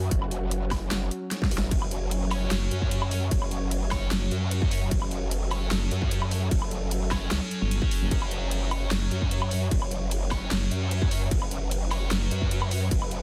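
Dense and heavily limited, this short heavy wobble dubstep cut sits in a digital ambience, its half-time groove feeling menacing and weighty over a single F#5 chord. A growling, detuned growl bass with formant filtering, chorus and overdrive drives the low end from the start, saturated and up front, while a lush supersaw pad holds slow-attack sustained chords above it, pumping under sidechain and softened by a low-pass filter. The drums are layered and tape-warm: a distorted electronic kick with small room ambience anchors a dubstep kit of huge snare, bright hats, handclaps, crash and woodblock, with a short drum fill at 1.3 seconds. At 2.3 seconds a double-tracked, high-gain electric guitar cuts in with bright, distorted stabs trailed by digital delay. A metallic FM wobble bass joins at 2.5 seconds, aggressive yet mellow at its core, adding chorus and overdrive to the low end through most of the passage.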